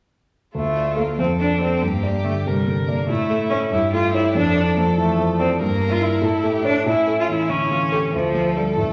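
A rich, vibrato-laden cello and a dark, mellow grand piano, its action noise audible, open this stormy, dramatic excerpt from a quick classical-period piano trio movement in 6/8 at 0.5 seconds, joined by a close, expressive violin melody with soft attacks, vibrato and portamento at 0.6 seconds, all carried by a recital hall's wet reverb.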